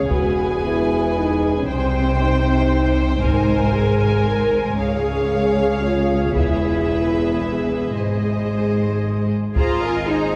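Heroic and majestic, this short excerpt from a cinematic, epic orchestral film score moves in 3/4, with a distant, smooth symphonic violin section carrying the melody over a focused studio violin section on a second line and lush violas filling in the accompaniment. Dark, tight French horns hold sustained chords while bowed cellos, close and sitting in the background, join the double basses on the bass line. Hard-stick taiko drums, close and dry, enter at 0.1 seconds beneath it all, the whole ensemble bathed in the long, wet reverb of a church.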